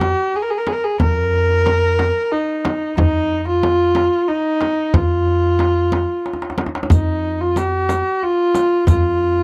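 This is a dry, close recording in a small room, with the feel of a 1970s studio, cut from a longer piece. It is a soulful, longing Persian modal ensemble in F dastgah shur, moving at 91 BPM in a straight 3/4, tuned to A4 = 441 Hz. A single bowed kamancheh carries the melody up front between Eb4 and Bb4, its rich, nasal, earthy tone colored by light vibrato and portamento. Beneath it, an upright bass with steel strings sits on F2, played pizzicato with a woody, dark sound. A warm, close frame drum and a tight, compressed, saturated tombak played with soft hands in the background hold the pulse. After a drum fill at 6.3 seconds, a riq joins at 6.9 seconds, adding bright jingles before the passage ends at 9.4 seconds.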